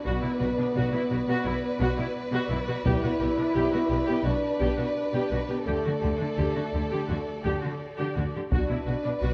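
A cut from a longer cinematic orchestral score opens with the full body of strings and a mellow horn section sounding together in an epic, dramatic mood. A violin melody sits far back in the background, while a second violin line glides with soft attack and portamento, and the lush violas add an intense, vibrato-rich accompaniment. Cellos and double basses anchor the low end with a smooth, even bowed bass, and the French horns hold sustained chords from a roomy, distant position. Taiko drums struck with hard sticks cut in at 2.9 seconds and again at 8.5 seconds, their compressed, saturated hits standing out against the strings. The whole piece sits in a moderate scoring-stage reverb, heard through worn, warbling cassette tape with pitch drift and lossy compression artefacts.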